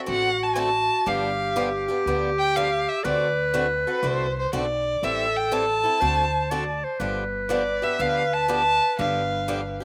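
Swinging and charming, this short cut of acoustic string swing in the jazz manouche style puts a warm, up-front bowed violin on the melody with expressive vibrato and portamento, while a clear, close-miked clarinet adds a jazz-style second line with light vibrato, a bright, boxy picked guitar carries the accompaniment through D7, G7 and Am7 changes, and a woody, thumpy pizzicato upright bass on gut strings anchors the low end, with slapback echo on the violin, clarinet and guitar and a dry, open-air sound carrying little reverb.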